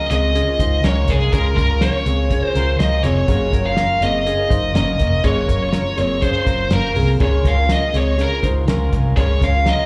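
A live club gig comes through the venue's PA with light reverb and a small-room ambience, giving this short, bright and nostalgic slice of jangly indie pop an intimate, roomy feel. At 122 BPM in a straight 4/4, it sits in Db major and moves from Db6 to Gbmaj7 at 3.3 seconds, returning to Db6 at 7.2 seconds. Up front, a high-gain lead guitar carries the melody with a distorted, picked bite and slapback echo. Beneath it, a mellow, clean electric guitar plays fingered arpeggios coated in lush chorus, while a fingerpicked twelve-string acoustic guitar sits in the background, its boxy archtop tone shimmering with octave doubling. A vintage muted fingered electric bass adds a round, foam-muted low end, and a cloth-damped, thuddy drum kit supplies hi-hat, a tight kick and a fat snare with a rolled-off top and slapback echo.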